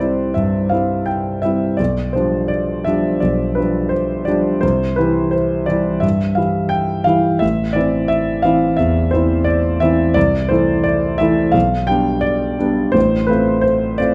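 Recorded up front in a moderate recital hall with a 1.4-second reverb, a warm concert grand piano sounds intimate and natural, with deep bass and audible action noise. This lyrical, hopeful romantic character piece for solo piano moves at 86 BPM in 4/4 with a rubato feel, spanning A1 to G5 in C major. Cut from a longer piece, the 14.1-second passage moves from C through G7/B and Am before settling toward G/B and F/A at 13.0 seconds.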